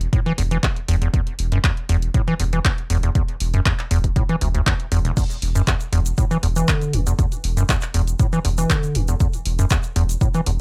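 A squelchy, resonant square-wave acid bass riff ranging from E1 to E3 drives this trippy, raw acid house fragment, sitting up front with overdrive and sidechain pumping over a deep, thick saturated sine sub bass on E1, an overdriven punchy electronic kick, an analog drum machine of crash cymbal, handclaps and hi-hat, and a grainy egg shaker that joins in the background at 5.2 seconds, all captured as a dry, gritty hardware recording.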